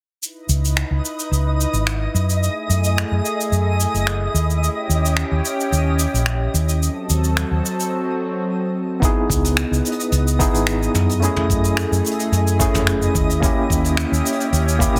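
A dense, heavily limited mix with light reverb and studio ambience carries this smooth, relaxed sunset chillout excerpt at 109 BPM in C# minor, where a lush, warbling detuned pad with chorus sustains chords such as C#m9, F#m9 and D#7b9 over a round, dark hollow-body fingered bass up front, a soft brush kit of finger snaps, hi-hat, shaker and toms with soft clipping on the snare, and a twinkling granular texture with octave-up shimmer and built-in reverb, before a barky, overdriven tine electric piano with fast tremolo and delay and a gritty, thumpy electronic kick arrive at 9.0 seconds.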